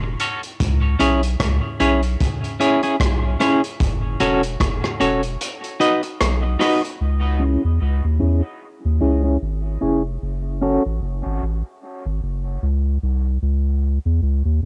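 A gritty, saturated breakbeat kit of tight kick, hi-hat and rim click on cassette sets a swung 75 BPM groove for this hypnotic, meditative dub reggae fragment in C# minor, dropping its kick at 5.4 seconds and falling silent at 7.0, while a round, soft sub bass holds the low end throughout and a clean picked electric guitar, treated with tremolo, filtering, tape coloring and dub echo, drifts over F#m, C#m and B chords until 10.8 seconds, all in a lightly reverberant small-room home recording.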